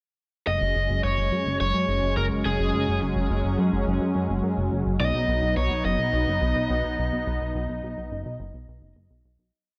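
At 0.5 s, a dark, glossy synth bass, a smooth analog pad and an overdriven electric lead guitar begin together, setting a romantic, dreamy synthwave mood in a straight, steady 4/4. The bass is up front, a sequenced sixteenth-note line built from detuned sawtooth and pulse-wave tones, with a fast filter pluck and a chorused shimmer. Beneath the melody, the detuned sawtooth pad holds mellow, soft-attack chords, moving from F#sus2 to B at 5.0 s. The picked guitar, sounding through a small cranked amp with tape echo, carries a motif-based melody in sentence-like phrases and sits forward in the mix. A lush hall reverb surrounds the sound, and the piece fades out from 6.5 s, with the guitar stopping at 8.9 s just before the pad and bass end at 9.5 s.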